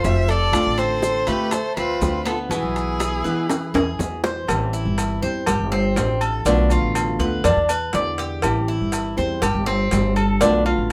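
A nasal, expressive bowed violin with vibrato and portamento carries the melody up front, shadowed by an airy, tongued concert flute until both stop at 4.0 s in this nostalgic, danceable Cuban son and guajira excerpt in A minor at 122 BPM, as a woody, full-bodied fingerpicked nylon-string guitar and a metallic, double-strung tres picking arpeggios play alongside a dark, thumpy pizzicato upright bass, while round, low-tuned bongos and cowbell, grainy maracas and ringing timbales and agogo bells fill out the percussion, with a drum fill from 3.5 to 4.5 s, all in a moderate studio ambience.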